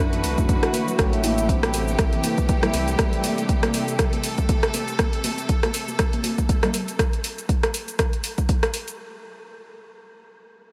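A deep house kit of cabasa, hi-hat and rim click opens a swung afro house groove in four, sitting up front with a gritty, small-room bite, and an overdriven electronic kick soon joins to drive it, while high-tuned congas with a thick-skinned, vintage tone patter softly in the background. The mood is hypnotic and earthy, set in a dreamy mix drenched in a huge ambient reverb. At the opening, a round analog bass with a mellow, evolving tone and a ringing stainless-steel handpan playing arpeggios through delay both pump against the kick before stopping at 3.0 seconds. A clear, lush symphonic string section holds bowed chords with gentle vibrato, also pumping with the kick, until 7.0 seconds, moving from D7 to Am7. This drop section is cut from a longer piece, and the drums carry on alone after that, the kick dropping out at 8.6 seconds while the kit runs to the end.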